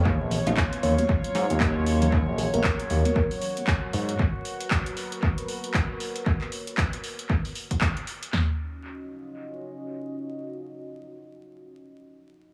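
Warm and smooth, this deep house excerpt in Eb minor moves at 116 BPM with a swung 16th feel, opening on a drop where a punchy, dry analog drum machine and a nasal, up-front synth bass with vibrato and sidechain pumping join a layered, tape-warm house kit of handclaps and hi-hat with analog delay, faint bright congas, a muted, resonant dub chord stab that stops at 2.4 seconds, and a sparkling, bell-like FM electric piano melody with chorus, tape character and delay, all over a moody, detuned ambient pad with chorus, reverb and sidechain pumping that sustains Ebm9, Abm9 and Db7 chords until 11.6 seconds in an echo-heavy mix with vinyl crackle and small room ambience.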